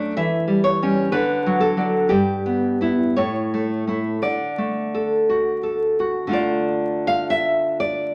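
Romantic solo classical guitar in D major, sunny and nostalgic, drifts at 56-62 BPM in a rubato 2/4 as a single fingerpicked nylon-string guitar, full-bodied and up front, spans F#2 to F5 inside a large studio reverb with vinyl crackle, moving through D, Em/G and A before turning to a D minor chord at 6.3 s in this short excerpt.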